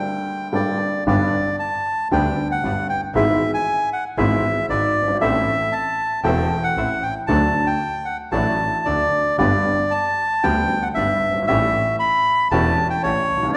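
A reedy, up-front bandoneon carries the melody, spanning C#5 to B5, in this passionate, melancholic tango, set in G major at 116 BPM in 4/4 with a rubato feel and tuned to A4 = 441 Hz. A woody, slightly detuned upright piano with short sustain plays the accompaniment throughout, joining the bandoneon in a brief opening break that lasts until 1.1 seconds. At that point a single bowed double bass enters, biting and intense with light vibrato. A second bandoneon also comes in with airy, very quiet stabs in its middle register. The harmony moves from G through E/G#, Am and D, then returns to G before reaching A7. The sound comes from a reverberant recital hall with a 1.6-second decay and rolls off above 11.0 kHz, and the clip is cut from a longer piece.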